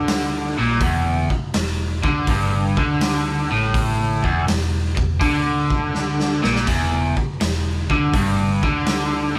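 Heavy and gritty, this short blues rock and southern rock power trio cut swings at an easy lope as a bright, overdriven, double-tracked electric guitar riff sits up front over a dark, round hollow-body bass and a raw, saturated garage drum kit with a punchy kick and medium-tuned snare in a pumping stone room, the drums breaking into a fill from 5.9 to 6.7 seconds, all heard as a band playing live in one room under light reverb.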